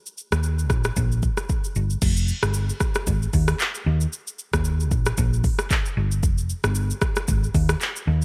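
An afro-pop drum kit opens this sunny, joyful afrobeats excerpt at 0.1 s, with a deep kick, smooth hi-hats, rim clicks, handclaps, shaker and crash cymbal set up front in an electronic, produced sound with a tape-warm glow. A hollow-body short-scale electric bass, played with the fingers, joins at 0.3 s, ranging from F1 to Eb2 with a dark, round, punchy amped tone that also sits up front. The groove moves at 114 BPM in 4/4, with a light 55% swing on the sixteenths giving it a relaxed lilt. A new section begins at 2.0 s and carries the pair through to the end of the clip. The bright, 1980s-style digital production wraps the track in a glossy digital ambience, and the passage is cut from a longer piece.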